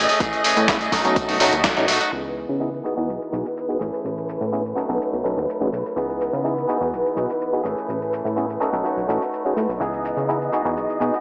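Filtered disco house at 125 BPM, nostalgic and funky, this excerpt runs through Amaj7, B7, C#m9 and Emaj7 under a dreamy plate-reverb wash with a small-speaker sound, as a twangy, up-front clean electric guitar riff with 12-bit grit and a stringy, phased clav sit over a plucky analog bass, all three pumping through sidechain and low-pass filtering. A dusty, overdriven sampler-style kit supplies hi-hat, shaker and snare, a punchy electronic kick appears only from 0.2 to 1.7 s, and a band-limited tambourine sits in the background until 2.1 s. A dark, lush symphonic string section holds sustained chords at the back, and a band accent at 1.6 s precedes a filter sweep running from 2.1 s to the end.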